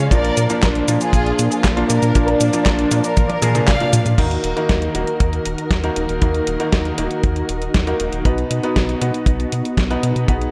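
A straight italo disco groove, danceable and melodramatic, is driven by a dry, tight acoustic kick and a clean electronic drum machine whose fat snare, handclaps, hi-hat, cabasa, crash and toms carry gated reverb, with a drum fill from 3.2 to 4.2 seconds. A round, detuned analog bass sits deep underneath, while a bright concert grand piano plays stabs with a worn, gritty sampler edge, and a dark, woody string section holds lush bowed chords over a Bb, Ebm and B progression. An expressive violin section sings the melody with tape echo until 4.1 seconds, and the whole fragment sits in light studio reverb.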